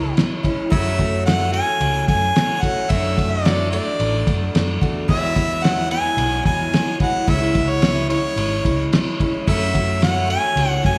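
Folk rock and heartland rock with a jangly, warm mood, cut from a longer piece: an up-front harmonica carries the melody with vibrato, scooped notes and analog delay over a boxy, picked ladder-braced acoustic guitar, a round, amped fingered electric bass and a cloth-damped, thuddy drum kit that enters at 0.2 s with a fat snare, tight kick and dark cymbals, the whole band sitting in a moderate recital hall reverb as the chords move from C#m through F#m, D/F# and Eadd9.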